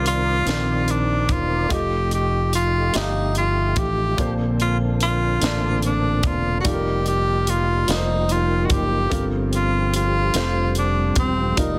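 Slow gospel in a straight 6/8 at 49 BPM, uplifting and reverent, with a breathy tenor saxophone carrying the melody up front, its soft attack, vibrato and scooped notes giving it a jazz-style voice over an upright piano that sounds woody, slightly detuned and intimate, with audible action noise. A tonewheel organ holds clean sustained chords in the background through a slow rotary speaker and chorus vibrato, with a touch of key click, while a round, punchy fingered electric bass sits dark and direct alongside a tight funk drum kit with a high-tuned snare, tight kick and hi-hat entering at 0.1 seconds. The harmony moves through lush extended chords from Cm9 to Gm11 in light reverb and small room ambience, and the dense, heavily limited master makes this cut from a longer piece feel full and close.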